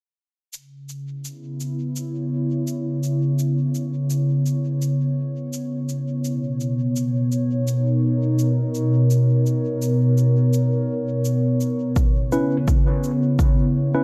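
A cabasa sets an unhurried 84 BPM pulse in 4/4 with a gentle 16th-note swing, its overdriven, processed shake sitting low in the mix from 0.5 seconds. This excerpt of ambient dub in C# dorian feels meditative and deep, built on a warbly, tape-like pad that holds sustained chords moving from C#m7 to Bmaj7 and back to C#m7. The pad's detuned sawtooth and triangle tones, slow attack, long release and chorus give it a nostalgic, lo-fi, vintage character, and a filter sweep runs across it throughout. At 12.0 seconds a punchy, layered electronic kick drum arrives up front with overdrive, and shortly after a mellow, clean tine electric piano adds brief stabs through a dub echo. The production is dark and warm, set in an echo chamber reverb with a moderate tail.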